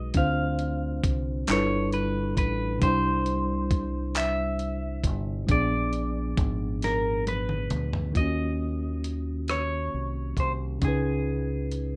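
A twangy, slightly broken-up electric guitar through a small old amp carries a yearning melody with slapback echo and plate reverb over a worn, slightly out-of-tune tine electric piano and a round, dark fingered dub bass, while a gritty, compressed sampler-style soul drum kit with thumpy kick, fat snare, handclaps, rim clicks, hi-hat and toms plays a fill from 6.8 to 8.1 seconds in this sultry, slow six-eight R&B excerpt at 45 BPM, a rough home demo with light reverb whose chords move from Dm7 through G13, Cadd9 and Bb7b9 before shifting to Ebm7 at 8.1 seconds and then to Db9.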